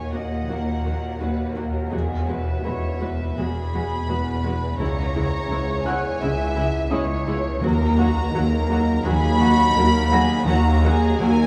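Cinematic suspense film score with a tense, eerie mood, where a soft sul tasto violin section carries a floating melody over a dark second violin line, a close viola accompaniment, a very quiet vibrato cello riff, a distant symphonic cello section and dark double basses on the bass, mellow French horns holding sustained chords, a dark baby grand piano adding texture in the background, and a swarming, detuned granular drone with its own reverb, while very quiet timpani enter at 7.6 seconds and stop at 8.7 seconds, all set in a moderate scoring stage reverb.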